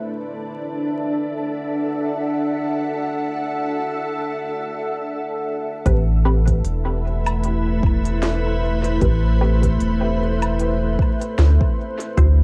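A relaxed 76 BPM pulse in 4/4 carries a gentle swing on the sixteenths, setting a hazy, deep mood for this slice of ambient dub in A dorian, cut from a longer piece. For the first 5.9 seconds a soft, organ-like pad holds sustained chords alone over D7. Its pure, detuned, bright tone carries ensemble chorus and its own reverb, with a slow attack and a long release. At 5.9 seconds the harmony moves to Am7 and the groove arrives: a round, up-front analog bass with tube saturation and a filter sweep, a layered electronic kick with a deep low end, and an electronic kit of woody snare, crisp hi-hats and woodblock touched by dub echo. Sitting lower in the mix, a muted, wave-folded chord stab adds filtered hits with a plucky attack and short decay, colored by phaser and dub echo. Cassette tape tints the pad, stab and drums, while vinyl crackle and light reverb give the home cassette recording a dusty finish.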